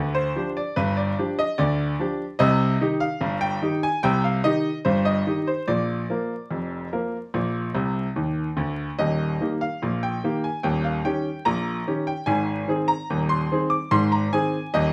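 A bright grand piano carries this ragtime excerpt entirely on its own, its brilliant, slightly worn tone sitting up front with a short sustain and reaching from the deep bass up into the high treble. The mood is cheerful and playful, moving at an unhurried 73 BPM in a straight 2/4 feel in E-flat major, with the piano tuned to A4 = 439 Hz. The harmony passes from G5 through C minor and B-flat, arrives on E-flat at 9.0 seconds, then moves to E-flat 7 and A-flat. Just before that arrival, a short piano fill runs from 7.8 seconds. A wet studio reverb surrounds the piano, and the rough home-demo mix carries a layer of vinyl crackle, giving this brief fragment of a longer piece an old-record charm.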